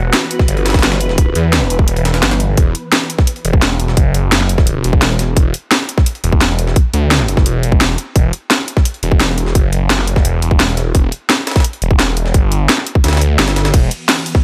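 Driving at 172 BPM in a straight 4/4, this tense, aggressive stretch of dark technical drum and bass in E minor rides on an up-front tight electronic kick that drops out from 1.9 to 2.6 seconds, layered with an overdriven kit of cracking snare, bright hats and ride cymbal recorded in a small room, plus a very quiet, compressed sampler-style breakbeat kit with a high-tuned snare. A thick, swirling detuned sawtooth bass, coloured by phaser and tube saturation, holds the low end until 13.9 seconds. A swarming, evolving drone of slow-attack granular chords with ring modulation, twelve-bit sampler grit, sidechain pumping and built-in reverb sustains an E minor chord over the opening 2.6 seconds before resurfacing briefly at the close, all set in a digital ambience.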